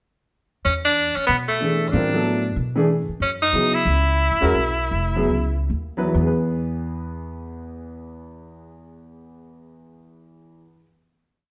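A swung 4/4 jazz pulse at 131-188 BPM slows from 3.2 s into a final E chord at 6.1 s, as a bright, punchy tenor saxophone with vibrato states a forceful, motif-based melody in E mixolydian over a woody, thumpy pizzicato upright bass in a two-feel and a smooth grand piano comping in syncopated quartal voicings, the band sounding live together in a wet stone room with a spiritual, open mood.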